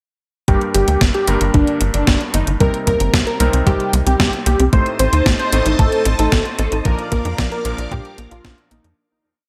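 A light reverb surrounds this short, bittersweet italo disco piece, and the whole track fades out from 6.1 seconds. An overdriven, thumpy electronic kick drives a danceable four-on-the-floor beat, while a clean 12-bit drum machine adds closed hi-hats and a medium-tuned snare with studio ambience and gated reverb. Up front, a punchy, saturated sequencer bass runs in sixteenth notes, and a thick, detuned unison lead carries a repeating riff with vibrato, chorus, delay and a gritty sampler edge. Behind them, a warbling, lo-fi pluck cycles through an eight-step arpeggio under a filter sweep, while a clangy electric grand piano marks the chords with held stabs and syncopated pushes. At 4.7 seconds a lush string machine enters with bright sustained pad chords, colored by phaser and ensemble chorus, as the harmony moves from Gm through Cm7 and Adim to Bb.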